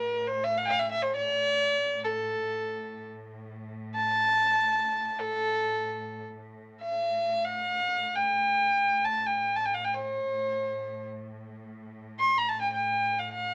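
A solo violin and a bowed cello section begin together at 0.0 seconds in this stately, festive passage of Arabic maqam music, cut from a longer piece and played in free time in A maqam huzam. The violin carries the melody up front, with a rich, reedy gut-string tone, light vibrato and a period-style manner, ranging from A4 up to C6+46c. Beneath it, the cello section holds a steady drone on A2, its sound clear, smooth and even, with vibrato and a clean studio quality, sitting much lower in level than the violin. The melodic material is stated once and then returned to from 6.4 seconds, as both parts carry on to the close at 13.5 seconds. Light reverb gives the ensemble a gentle sense of space.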